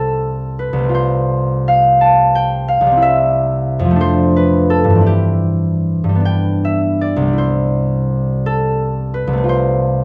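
Serene and dreamy, this short passage of classical music for solo concert harp drifts in 6/8 with a free, rubato pulse. The harp is the only voice from 0.0 to 10.0 s, fingerpicked and sitting up front, its ringing strings spanning from C2 up to A5. The harmony rests gently on C, leaning toward F/C and Dm/F before a C/G to G cadence settles back home on C at 7.4 s and turns again to F/C. A light reverb lends the acoustic tone a soft halo, while the production stays dark and warm overall. Cut from a longer piece, it feels like a calm statement that has only begun to unfold.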